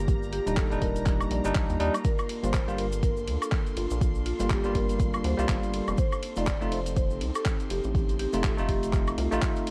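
A close, cassette-tape-coloured excerpt of sunny, relaxed deep house with a swung 16th-note feel, built on an up-front, overdriven deep electronic kick and an overdriven drum kit of handclaps, hi-hat, ride cymbal and woodblock. A rubbery, hollow square-wave bass pumps beneath barky, bell-like electric piano stabs, a woody marimba melody with tape echo, an airy, breathy pad with gritty 12-bit sampler texture, shimmering string-machine violins, and a grainy cabasa in the background, moving from Ebmaj7 to Gm7 at 2.0 seconds and F7 at 6.0 seconds.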